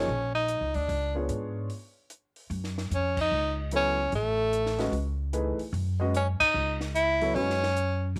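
A light studio reverb frames this hypnotic, searching modal jazz excerpt in F# dorian, swinging in 4/4 at 148 BPM. Up front, a bright tenor saxophone carries the solo melody with light vibrato and scooped notes over an intimate concert grand piano with audible action noise and deep bass, a woody pizzicato upright bass, and a compact cocktail kit of dry, dark cymbals, high-tuned snare and punchy kick. A break at 1.7 s leads into a passage on F#madd9 from 2.5 s that band accents punctuate, and the piano stops at 7.6 s.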